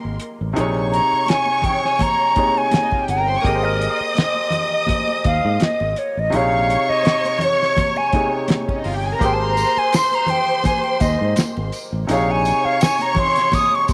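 Warm and smooth, this excerpt of lush 1970s-style soul moves at an unhurried 83 BPM in 4/4, with a light swing on the sixteenths. A breathy silver concert flute carries the melody from 0.9 s, its close-miked, straight tone sitting above a bowed studio violin section that adds an expressive, vibrato-rich second line up front. A clear concert grand piano accompanies with long sustain and audible action noise, while a punchy fingered electric bass anchors the low end until 12.7 s. The cloth-damped drum kit gives a dry, thuddy pulse with a fat snare and tight kick, joined by ringing, high-tuned congas and, from 9.2 s, a jingly tambourine far in the background. The harmony sways between Abmaj9 and Bbm11, and a light studio reverb surrounds the ensemble.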